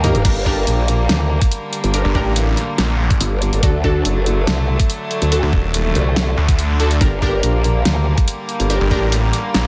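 A dry, up-front mix opens this aggressive, chaotic slice of heavy wobble dubstep in G harmonic minor, which moves at 142 BPM in a half-time feel and is cut from a longer piece. It starts on a break and drum fill, then a knocking, tape-warm electronic kick arrives at 0.2 s beside a dubstep kit with a huge snare and bright hats, while a growling, saturated wobble bass with chorus is joined at 2.0 s by a snarling, detuned sawtooth bass with a moving notch. Above them, a rich, earthy chamber string section with light vibrato holds pumping sustained chords, and bold, punchy orchestra-hit-like synth stabs ring out through reverb, cassette tape and digital delay over Gm, D and back to Gm.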